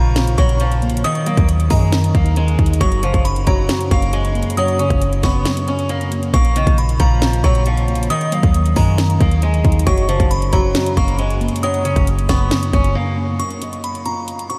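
A dreamy, reverb-soaked mix carries this dark, brooding trap excerpt at 136 BPM in a half-time feel, where a bright, boxy picked swing-style acoustic guitar leads the melody through lush chorus, low-pass filtering and tape echo, a delicate tinkling synth tine bell adds a high second line with chorus and tape echo, a mellow tine electric piano accompanies, a deep, boomy clean 808-style bass anchors the low end, and a trap kit of hard-clipped kick, sharp snare and metallic hats enters at 0.2 seconds, with breaks around 5.5 and 13.0 seconds and a filter sweep on the guitar from 13.4 seconds as the chords drop away.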